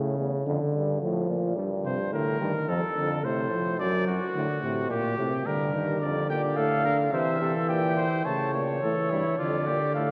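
A warm cornet carries the melody up front from 6.3 seconds in this solemn, contemplative classical canzona for brass ensemble, a short cut from a longer piece moving at 108 BPM in a straight 4/4. A mellow, smooth-topped trombone accompaniment and a vintage-sounding euphonium bass open together at 0.0 seconds, and a clear trumpet takes up a second line at 1.9 seconds, with light vibrato on the cornet, trumpet and trombone. The harmony moves through chords such as Gm, D/F# and A, all heard inside a wet church reverb and through worn, warbling old cassette tape with drifting pitch.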